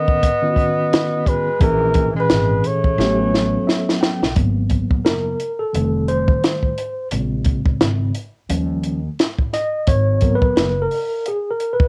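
A bucket-muted trumpet opens this cool, smoky jazz-hop cut, its dark, veiled tone carrying the melody close and up front with light vibrato, while a breathy tenor saxophone whispers a distant, subtoned second line beneath it until both fall away at 4.0 seconds. A mellow tine electric piano plays throughout through its built-in speakers, and a compact cocktail kit with a punchy kick and high-tuned snare sets a swung 87 BPM groove in 4/4. A pizzicato upright bass with a woody, bright steel-string sound joins at 1.6 seconds over chords moving from Bmaj9 through A#m7b5 to A13. A drum fill and an electric piano fill lead into the second section at 4.4 seconds, where the electric piano takes a solo over G#m7, F7, A#m7 and D#7 changes. Light reverb and a cassette home-recording character color the passage.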